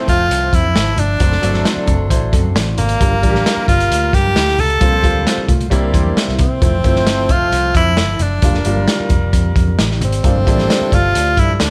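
Joyful and danceable, this 1960s-style soul excerpt rides a straight four-beat groove, with a bright, breathy tenor saxophone singing the melody up front in a close-miked, pop-style solo. Beneath it, a horn section plays a loose, jazz-style second line with light vibrato and octave doubling, sitting warm and smooth in the background. A crunchy breakbeat drum kit drives the track with a gritty, saturated sound, tight kick and medium-tuned snare, while a dark, round, foam-muted fingered electric bass anchors the low end. A natural-sounding grand piano supplies accompaniment until 10.9 seconds, a very quiet flute-like tonewheel organ holds soft chords through a rotary speaker, and ringing congas played with soft hands add a faint, dry pulse. A clean, dark hollow-body jazz guitar slips in from 1.9 to 6.6 seconds with a fingered riff, over chords moving from Fmaj7 through D7/F#, Gm7, C7sus4 and C7 before returning to Fmaj7, Bb6/F and Gm7, all in a close, nearly dry room.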